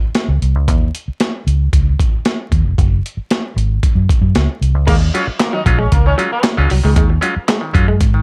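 A straight 4/4 funk groove at 115 BPM in Eb dorian opens on a gritty, compressed breakbeat kit with thumpy kick, handclaps and crash alongside a dark, foam-muted fingered bass, until at 4.9 seconds a slightly broken-up guitar riff, nasal clav stabs and a tight vintage horn section with analog delay join the driving, funky drive, all over a layer of vinyl crackle.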